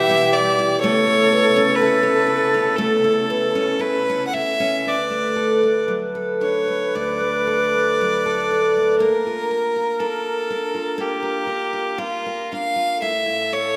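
A bright, biting solo fiddle carries the melody up front with light vibrato and intense bowing, while a breathy, mellow wooden flute drifts behind it on a distant, unsteady second line. Picked steel-string acoustic guitar offers close accompaniment, and a dark chamber string section holds expressive sustained chords in the background until 4.8 seconds, as the harmony moves from Em/B and Aadd9 toward D, Bb and A. This tender, nostalgic Celtic slow air unfolds at 59 BPM with a loose, rubato feel in a concert hall reverb, cut from a longer piece.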